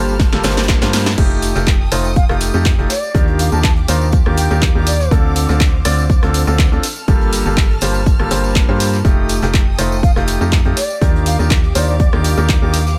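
A punchy electronic kick up front and a tape-warm analog drum machine with handclaps, rim clicks, hi-hat and crash, backed by very quiet jazz brushes and a background tambourine, drive this feel-good, euphoric piano house excerpt, where a brilliant grand piano riff with tape echo, a hollow organ-like FM bass and dark bowed violin chords pump to the sidechain, a breathy pad is heard only in the first 1.2 seconds, and a mellow silver flute with vibrato carries the melody from 2.2 seconds and again from 10.0 seconds.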